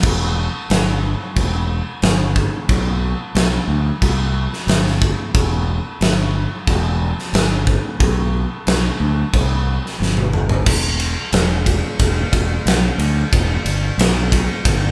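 Hypnotic and ominous, this stoner and doom metal excerpt moves at 90 BPM in E minor, with a growling, overdriven fingered electric bass holding the low end and a big acoustic rock kit sitting up front with a fat snare, punchy kick, crash, ride and toms in a bright stone room. The band sounds as if it is playing live together in one room with light reverb, and a drum fill from 10.0 to 10.7 seconds carries the music into a new section that runs to the end.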